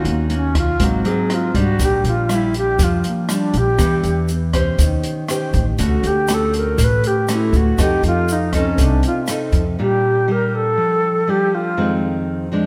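Breezy and romantic, this bossa nova excerpt at 120 BPM features an up-front, airy alto flute with vibrato, a soft attack and a reedy edge carrying the solo melody until 9.8 s, over fingerpicked classical nylon-string guitar, woody pizzicato upright bass, a smooth, dark drum kit with boomy kick, hi-hat and rim click, and a grainy tube shaker in the background, all set back in a moderate echo-chamber reverb, with the bass, drums and shaker dropping out near 9.8 s so flute and guitar carry the closing bars.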